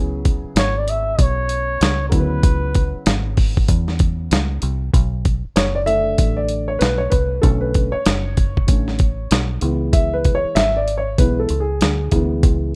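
A rough home-demo mix with studio reverb frames this smoky, nocturnal jazz-hop cut from a longer piece, where a gritty, compressed sampler-style drum kit sits up front with a thumpy kick, medium-tuned snare and hi-hat under a swung sixteenth-note feel. A round, punchy foam-muted electric bass and a dark, vintage grand piano with audible action noise carry the C#m7 and Bm9 harmony throughout. A breathy flugelhorn plays a brief jazz-style solo with scooped notes from 0.6 to 3.1 seconds, and the intimate piano takes its own solo from 4.9 seconds.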